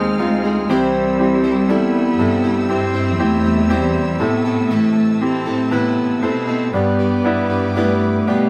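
In a straight 4/4 feel, this heartfelt pop ballad excerpt sets a distant, smooth solo cello carrying the melody over a brilliant, up-front concert grand piano, bright picked arpeggios from a plugged-in steel-string acoustic guitar, a rich bowed cello section holding the bass and quieter, lush sustained chords from a symphonic string section high above, played together in one room with moderate studio reverb as the harmony moves from Ab to C, Am and G.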